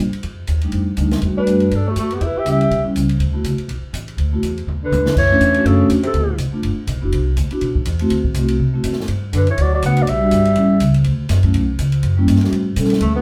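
Small-group swing and bop jazz at a brisk 244 BPM in D major, swinging and sophisticated, cut from a longer piece, with a woody, up-front pizzicato upright bass and an airy drum kit with dark cymbals and a boomy kick driving underneath a ringing, close-miked vibraphone comping with slow motor vibrato. A mellow clarinet with subtone and scooped notes carries the melody in short phrases from 1.4 seconds, shadowed by a breathy, distant tenor saxophone playing a second line in the same spots, while a drum fill near 4.7 seconds leads into a new section where the harmony moves through richer chords like Cmaj9#11 and F#7b9. The whole group sits further back in a wet studio reverb, though the bass and clarinet stay close.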